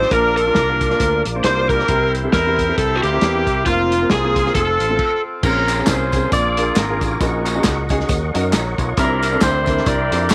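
A punchy, vintage horn section and an up-front overdriven slide guitar open this fervent, soulful stretch of swung, uptempo gospel. Beneath them sit lightly driven tonewheel organ chords through a slow rotary speaker in the background, a growly fingered electric bass, a dry, muffled soul drum kit and smooth grand piano accompaniment. The band halts for a brief stop at 5.0 seconds as the slide guitar falls away, and from 5.4 seconds distant tambourine, egg shaker and group handclaps join while the harmony shifts to a Bbm9 chord, all in light studio reverb.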